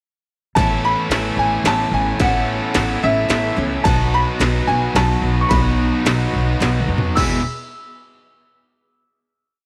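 A grand piano with a brilliant, slightly worn tone opens at 0.6 seconds alongside the full band, carrying a hopeful, nostalgic hook-based melody high in its range over a 3/4 pulse at 109 BPM in this short folk rock and heartland rock piece, tuned to A4 = 436 Hz. Beneath it, a picked steel-string acoustic guitar strums eighths in open chord shapes while a double-tracked, overdriven electric guitar rings out a chordal riff, and an up-front pizzicato upright bass with a woody tone drives eighth notes. An industrial drum kit gives the groove an electronic, produced edge, with a distorted kick, a clanging snare, crash and ride cymbals and toms, and a tape-warm small-room character. Very quietly in the background, a reedy tonewheel organ holds a sustained pad through a slow rotary speaker with chorus vibrato and key click. The harmony moves from Aadd9 to B through the pre-chorus, a drum fill arrives at 6.6 seconds, and the band settles on a final E chord at 7.2 seconds, all set in light digital ambience.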